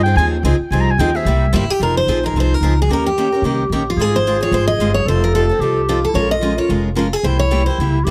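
Close, detailed microphones and light reverb frame this swinging, virtuosic excerpt of acoustic string swing in the jazz manouche style, where a breathy clarinet with vibrato, scooped notes and tape echo solos until 1.8 seconds over a woody, thumpy gut-string upright bass and a bright dreadnought guitar's picked accompaniment with audible finger squeak, while a second picked steel-string concert guitar with fresh strings enters with the melody at 1.6 seconds and the clarinet carries on as a second line.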